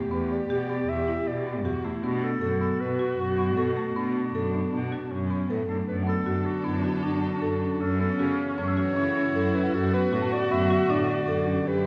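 Contemporary instrumental chamber music in 5/4 at 156 BPM, this hypnotic, urgent passage is cut from a longer piece and moves through Em7 and Bm7 before shifting to F#m7 and D/F#. From the first moment, a buzzing, woody marimba with medium hard mallets spins arpeggios over a rich, up-front bowed cello bass with expressive vibrato and portamento. A dark, smooth-topped viola carries a second line beneath a clear, classical-style clarinet melody. At 5.9 seconds a studio string section enters with sustained chords in a gut-string, period-style tone, and a delicate, bell-like celesta adds sweet texture in the background from 6.0 seconds. The whole ensemble sits in the wet reverb of a church or concert hall, giving the pulse a spacious, resonant glow.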